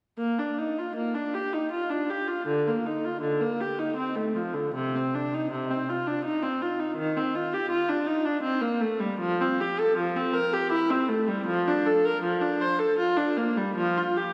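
In a rubato triple metre, this radiant, dance-like baroque-style suite movement, cut from a longer piece, features a single unaccompanied viola, bowed up front with a reedy, gut-string period tone from 0.2 to 14.3 seconds, its lines ranging from C3 to C5 and blooming into the long, wet reverb of a church.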